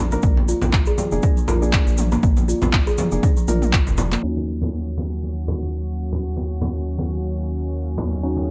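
This hypnotic, earthy afro house excerpt at 120 BPM in Eb minor, with a light swing on the sixteenths, opens on short, woody kalimba arpeggios with a hollow thumb-plucked tone and dub echo, over a round, deep analog bass that is dark, tube-saturated and up front. Felt-muted upright piano stabs, soft and intimate with thick felt and audible action noise, share the same dub echo, while ringing hard-hand congas, a grainy bright cabasa and a punchy, overdriven electronic kick drive the groove. A layered deep house kit adds crash cymbal, handclaps and toms, with its snare, toms and cymbals low-pass filtered, and the bass, kalimba and piano pump against the sidechain. The harmony moves from Bb7 to Ebm7 at 4.2 seconds, where the kalimba and cabasa stop and a smooth, detuned sawtooth pad enters with a slow attack, chorus and vintage 12-bit sampler grit. Around the same point the kick and kit fall away, leaving bass, piano, congas and pad under a filter sweep that runs to the cut at 8.5 seconds, all set in a small, muffled room.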